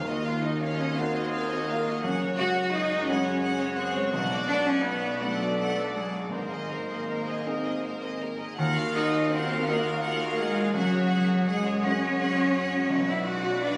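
Captured on a phone in a reverberant scoring stage, this bittersweet, moving cinematic film-score fragment in a rubato 6/8 sets a clear violin melody with vibrato over a second violin line, a distant, very quiet viola section, a background grand piano with deep bass, warm sustained French horn chords, ringing thumb-plucked harp arpeggios, focused double basses and smooth cellos, while a soft-mallet timpani stroke sounds only in the first 0.9 seconds, an airy flute section and a solo oboe add second lines, and a mellow clarinet joins at 8.6 seconds.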